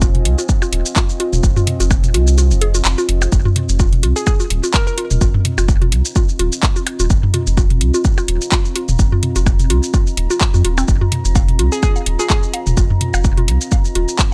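A quirky, clinical minimal techno groove with a swung sixteenth feel opens on a punchy, up-front electronic kick, a booming analog drum machine with metallic hats, handclaps and shaker, a round, nasal analog bass pumping under the sidechain, a woody, mallet-like FM pluck riff with chorus and digital delay, and a deep, moody wave-folded pad sitting low in the mix, while electronic toms and percussion blips echo through delay; the kick drops out from 2.4 to 3.3 seconds, and a hollow, bouncy square-wave pluck with a filter sweep briefly appears at 4.2 and 11.7 seconds over a sustained Fm7 in this tape-tinged excerpt.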